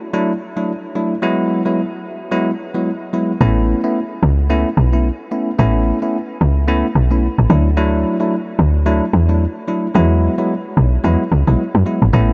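A bright, bell-like tine electric piano with a barky bite opens this joyful, breezy afrobeats excerpt with a swung sixteenth-note feel and add9 chords, joined at 3.4 seconds by a punchy, woody log drum bass up front, all soaked in a huge, dreamy ambient reverb.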